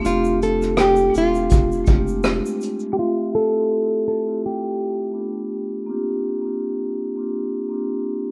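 Cosy and dreamy, this lo-fi hip hop excerpt sets a ringing, metallic vibraphone throughout against a bright, fingerpicked nylon-string guitar melody until 5.5 s, with a roomy brush drum kit and punchy kick, a deep, round dub sub bass and a grainy egg shaker in the background all dropping out by 3.0 s, under vinyl crackle, a lush hall reverb and a filter sweep through the closing section.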